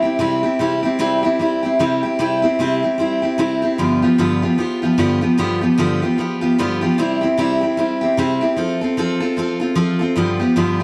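A lone picked steel-string acoustic guitar opens at 0.0 s with a full-bodied, jumbo tone that sits up front, launching a retro, rowdy rock passage in C major at 150 BPM with a swung eighth-note feel. Ranging from G2 to A4, it moves through C, G7, C and F before landing on G7 at 10.2 s, all set in a moderate plate reverb. This short fragment, cut from a longer piece, runs to 10.8 s.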